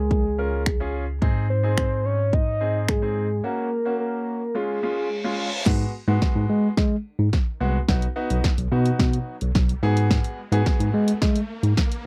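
A soft, octave-layered synth lead with a round, dark tone carries the melody through the opening 5.4 seconds, colored by chorus, phaser and tape echo. This confident, energetic dance-pop passage moves at 108 BPM in a straight 4/4, grounded by a worn, slightly out-of-tune tine electric piano that plays the bass line with sidechain pumping. A punchy, layered house drum kit of kick, snare, hi-hat, crash cymbal and finger snaps sits up front, while a clear baby grand piano adds polished accompaniment that also carries sidechain pumping. The harmony moves from Db through Ab and Gb into a break, where an electronic reverse cymbal arrives at 4.8 seconds; from 5.7 seconds the chords shift to Abm7 and B as a build-up unfolds with a drum fill and a riser. The dry, close sound recalls a 1970s studio, and the passage is cut from a longer piece.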